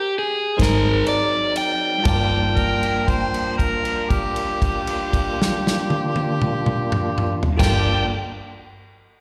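Brooding, soulful slow blues in 12/8, heard as a live gig through the venue's PA with a recital hall's reverb: an up-front, overdriven electric guitar carries the melody alone in a stop until 0.6 seconds, while the opening slows down; then a fat, key-clicking tonewheel organ with fast rotary speaker, a round, foam-muted vintage bass, an airy country drum kit with a punchy kick, a bell-like tine electric piano and a twangy, slightly broken-up guitar through a small old amp with tremolo fill in behind, before a held note from 2.0 seconds and a bright, close-miked harmonica entering at 2.6 seconds with scooped notes and light vibrato.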